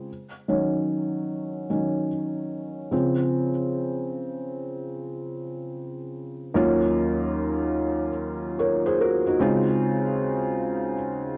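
Hip hop at a slow 74 BPM with a swung 16th-note feel, this nostalgic, melancholic fragment in Eb dorian, tuned slightly low to A4 = 438 Hz, is carried entirely by a felt-muted upright piano. The piano sits up front, mellow and intimate, its low-pass-filtered tone spanning Eb2 to Db5, with the soft clatter of its action audible. It moves from Ebm7 to Dbmaj7, then shifts at 6.6 seconds to richer Ebm9 and Dbmaj9 voicings, all in a dark production bathed in a short, wet studio reverb.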